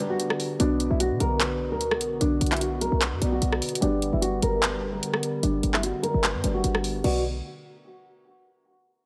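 A woody, fingerpicked nylon-string guitar melody opens this menacing trap cut over a felt-muted upright piano with audible action noise and a hollow, flute-like pad, all filtered as a sweep runs through the first 7.0 seconds. The bright-hatted electronic drum kit arrives at 0.2 seconds with handclaps, rim clicks and a crash, and a punchy, tight 808-style bass hits at 0.6 seconds to drive the half-time 149 BPM groove in B harmonic minor. The guitar carries a tape echo and the pad a chorus, while light digital reverb frames the hard-hitting mix as the chords move between G and Bm.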